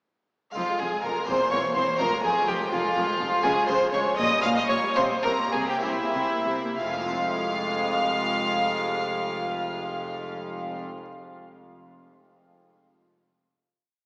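A stormy, driving baroque-style concerto movement in F minor, moving in a straight 6/8 at 60-84 BPM in dotted quarters, this short whole piece plays a ritornello that slows from 2.7 to 6.8 seconds before settling on a held final F minor chord until 10.8 seconds. A single rich, reedy, gut-string violin sits up front doubling the tune in unison and at the octave, while the violin sections carry the melody and an octave doubling in the background, the violas rock a two-note figure and hold sustained chords, nasal cellos repeat bass notes, and the double basses double the bass line. A full, French-style harpsichord rolls chords in the background, and the whole ensemble is bathed in a wet cathedral reverb heard through a small-speaker sound.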